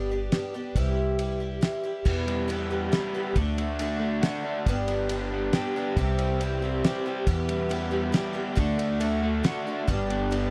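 Reflective and wistful, this folk rock and heartland rock excerpt moves at 138 BPM in 3/4 in E minor, with a shimmering, octave-doubled twelve-string acoustic guitar and a woody, thumpy pizzicato upright bass opening over a cloth-damped, thuddy drum kit with a fat snare and dark cymbals, before a double-tracked, crunchy overdriven guitar riff and a very quiet, distant bowed string section enter at 2.1 seconds over a G, C, Em, D progression in a dark, small-room production.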